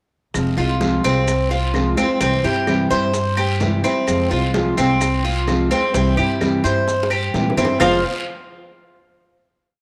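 An up-front Cuban tres with metallic double strings picks an arpeggiated guajeo from 0.6 s over a fingerpicked nylon-string guitar strumming with muted slaps, a dark, thumpy pizzicato upright bass playing a syncopated figure, and Latin percussion (very quiet ringing congas with slaps and open strokes, very quiet tight high-tuned bongos in steady eighths with hand bell, woody claves on a two-bar time line, a raspy, distant guiro and grainy maracas), in a danceable Cuban son and guajira piece at 129 BPM in F harmonic minor that moves between Fm and C, with a drum fill at 6.9 s, before closing on an F5 chord at 7.8 s inside a moderate echo-chamber reverb.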